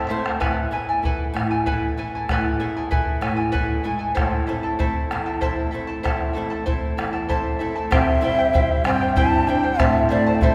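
A straight 6/8 lilt carries this festive yet wistful Andean folk fragment: a short nylon-string guitar fill opens it, and the deep, distant bombo enters at 0.3 s beneath a shimmering, double-strung charango and a bright, fingerpicked flamenco guitar moving from E/A to Am. At 7.9 s the harmony turns to C, and a breathy, close-miked large quena takes the melody with vibrato and a crisp chiff, joined by a woody, dark marimba second line. A wet concert hall reverb surrounds the ensemble.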